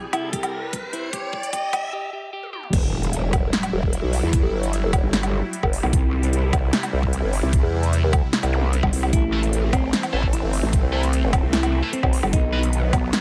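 Heavy wobble dubstep in E harmonic minor at 150 BPM with a half-time feel, menacing and chaotic, opening on a build-up where a clean, hollow-body semi-hollow electric guitar melody with phaser and digital delay floats over a lush, phased supersaw pad, a rising sound effect and a drum fill from a big-room dance kit with punchy snare and crisp hats, all cut from a longer piece. At 2.7 seconds the drop hits with an impact as a growling, detuned growl bass with chorus and overdrive surges up front beside a knocking, tape-warm electronic kick. A nasal, resonant vowel-sweep wobble bass, also with chorus and overdrive, follows at 3.3 seconds, while the pad pumps against the sidechain and the overdriven kit keeps its large-room character. From 9.3 seconds, bright, double-tracked high-gain distorted guitar stabs with digital delay join the returning clean guitar, all in a dry mix.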